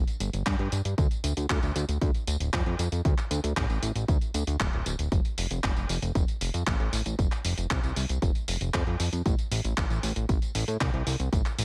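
Danceable and nostalgic, this short italo disco excerpt moves at 116 BPM in a straight 4/4, built on a fat, detuned sawtooth analog bass with a saturated filter pluck ranging from D1 to A2, a punchy, tape-warm layered electronic kick entering at 0.5 seconds, and a clean 12-bit drum machine supplying handclaps, hi-hat and tambourine with gated reverb, all in a dry overall space.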